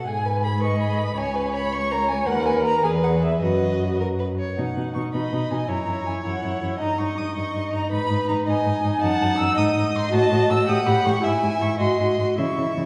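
In a brisk 6/8, this spirited, cheerful classical-period movement for string quartet is carried by a focused, distant first violin singing the melody with vibrato over a smooth, even second violin line, a soft-attacked viola that enters at 0.6 seconds with expressive portamento, and a rich, up-front cello bass, all bowed and bathed in a reverberant scoring-stage sound heard from further back with a softened top end, as the music moves into a new section at 4.6 seconds.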